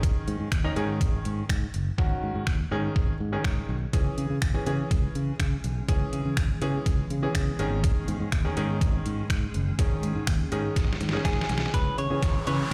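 This confident, energetic dance-pop excerpt opens with a detuned 8-bit digital drum machine, thumpy and overdriven, its kick, snare, hi-hat and finger snaps sitting up front at 123 BPM in a straight 4/4, alongside a punchy fingered electric bass and a clear, intimate grand piano whose action noise is audible and whose notes decay quickly. Both the bass and the piano pump against the sidechain, giving the groove a breathing push in C# minor as the chords move between G#sus4 and C#m. The hi-hats drop out briefly between 2.0 and 3.9 seconds, and at 5.2 seconds a very quiet granular cloud pad drifts in with blurred, evolving sustained chords. A drum fill arrives at 10.8 seconds, and at 11.3 seconds a bright, compressed clean electric guitar, recorded direct with delay, picks out a short melody as an electronic riser builds under a further fill in the closing moments. The mix is dry and close overall, yet it carries the character of a big sound system playing in a bare stone room.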